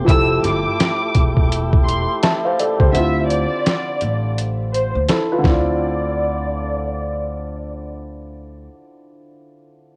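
A swung boom-bap groove at 84 BPM in 4/4 drives this tough, reflective hip-hop excerpt in D minor, with a sampler-style kit of thumpy kick, medium-tuned snare and hi-hat sitting up front, compressed, pitched down and gritty with cassette grit, until it drops out at 5.6 seconds. A dark, mellow grand piano carries the accompaniment throughout, intimate with audible action noise and short sustain, its tone narrowed by filtering and tape coloring. A lightly overdriven tonewheel organ holds lush, chorused chords with key click only through the opening 2.9 seconds, over an Fmaj9 that gives way to Dm9 as the organ falls away. Pizzicato upright bass, woody and acoustic, anchors the low end until 8.7 seconds, while a smooth, bowed violin section sings the melody high above with vibrato. At 2.9 seconds a break arrives with a filter sweep, and the whole take keeps the dry, homespun character of a cassette recording.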